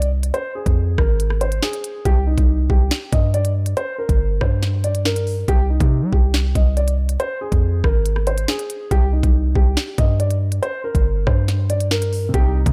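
Menacing and dark, this half-time drill hip hop excerpt in C minor at 140 BPM sets a boxy, mellow concert grand piano melody, muffled by a low-pass filter and trailed by tape echo, over an up-front, punchy 808 bass with a sine core and noise layer, a drill drum kit of knocking kick, sharp snare, crisp hats and rim clicks, and a brief low-passed piano accompaniment entering at 12.3 seconds, all in a small room ambience over a Fm–Cm–Gm–Cm progression.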